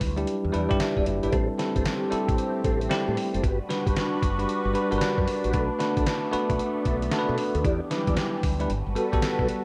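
A lightly reverberant, slick mix opens this short cut from a longer R&B new jack swing piece, moving at 114 BPM in A dorian with a confident, swung sixteenth-note feel. Up front sit a bright, bell-like tine electric piano and a gritty, compressed sampler-style drum kit with a thumpy kick, fat snare and hi-hat under gated reverb, re-recorded in a large room, while a dark, round fretless electric bass with analog chorus anchors the low end. From 0.5 s a soft, flute-like tonewheel organ adds stabs in the background through chorus vibrato, slow rotary speaker and tape echo, and at 1.3 s a swirling, detuned sawtooth pad enters with phaser and chorus, holding sustained chords across Am7, Gmaj7, Bm7, Em7 and Gmaj9.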